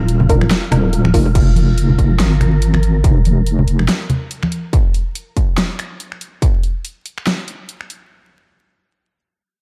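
Cavernous and meditative, this deep dubstep fragment opens on a drop with a half-time, lightly swung feel. A deep, saturated wobble bass with chorus sits up front from the start, joined by an airy, breathy wind-like noise texture that drifts through its own reverb until about 3.0 seconds. A muted, detuned dub chord stab flickers briefly through phaser, analog chorus and dub echo, while soft-handed bongos and congas sit bright and close in the background. The electronic kick is distorted and prominent, and the dubstep kit brings a huge snare, bright hats, finger snaps and crash cymbal, carrying on with the kick and the hand percussion after the bass drops out at 3.9 seconds. The production is dark and tape-tinged, dusted with vinyl crackle and kept fairly dry, as the harmony shifts from Ebsus2 to Fm at 1.4 seconds.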